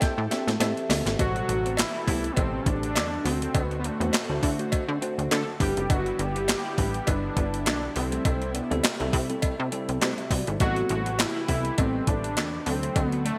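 An overdriven drum fill from a clean 12-bit drum machine opens this funky, danceable early-eighties boogie funk excerpt, its thumpy kick, snare, hi-hat and handclaps sitting up front in gated reverb alongside a plucky, wave-folded analog bass. Throughout, a fat, detuned sawtooth lead carries the melody with vibrato over a worn, slightly out-of-tune tine electric piano and a thick, warbling unison pad with chorus, while a cowbell sits in the background and, from 0.3 seconds, a very quiet, twangy guitar riff plays through a small old amp. The bright, digital 1980s-style production is set in a lush hall.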